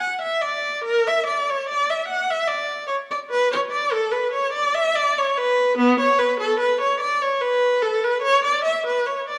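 Bathed in a lush recital-hall reverb, this 9.4-second fragment of a radiant, flowing, baroque-style classical suite movement features a single rich-toned viola played solo and bowed, sitting up front yet with a distant air, spanning B3 to F#5 with expressive vibrato and portamento at a rubato 73 BPM in 3/4, tuned to A4 = 437 Hz.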